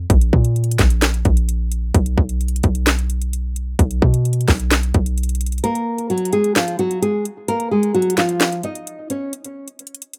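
A deep, boomy 808-style bass opens this menacing, melancholic trap cut from a longer piece, with an electronic trap drum kit arriving almost at once. The tempo sits at 130 BPM in a half-time 4/4 feel, and the music is in Bb phrygian. Up front, the sine-based bass carries a noise layer, a fast attack and a decaying tail, while the kit pairs a hard-clipped kick and sharp snare with metallic hi-hats and handclaps. At 5.6 seconds the bass drops out and a full-bodied nylon-string guitar enters with the melody, fingerpicked in a classical manner with audible finger squeak, as the harmony moves from Bb5 to Bb7(no3). The guitar falls away at 9.3 seconds, leaving the drums to carry on until the end. The sound is dry with little reverb, and the rough home-demo mix keeps every part close and present.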